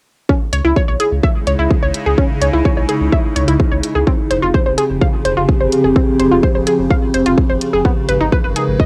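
A punchy, overdriven electronic kick and a bright, detuned analog pluck arpeggio with chorus and analog delay open this driving, dramatic melodic techno excerpt at 0.3 s. They are soon joined by a round, deep analog bass, an overdriven hi-hat, and an evolving wavetable pad with phaser and 12-bit sampler grit entering at 1.1 s. A tense, swarming granular drone on C#3 sits in the background from 1.4 s. Everything runs at 127 BPM over C#m, Fm and G#m chords, with sidechain pumping on the pad, pluck, drone and bass and a cassette tape haze on the pad, pluck and drone.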